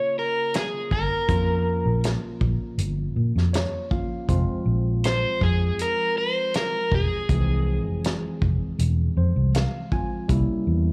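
Straight-eighth soul blues with a brooding, smoky mood, heard as a short cut from a live club gig through the venue's PA, where an overdriven semi-hollow guitar carries the dark, picked melody with slapback echo over a worn, slightly out-of-tune tine electric piano that adds fills at 3.2 and 8.8 seconds, a round, foam-muted fingered bass, and a dry soul drum kit with a fat snare and tight kick, moving from Bbm to Fm before closing on a C7b9.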